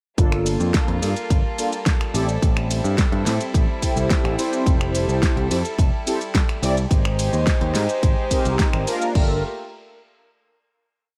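Nu-disco in G dorian at 107 BPM, this groovy, sensual piece drops straight in with a punchy four-on-the-floor electronic kick, a pop drum kit of fat snare, finger snaps, shaker, hi-hat, ride and crash on a disco backbeat, a funky syncopated picked electric bass up front, mellow detuned sawtooth synth brass playing dark rootless chord stabs through chorus, phaser, delay and sidechain pumping, and a floating sul tasto studio violin section holding smooth, pumping pads over Gm9, Am7, Fmaj9 and Abmaj7 before settling on a final Gm9 chord at 9.2 seconds in a digital ambience.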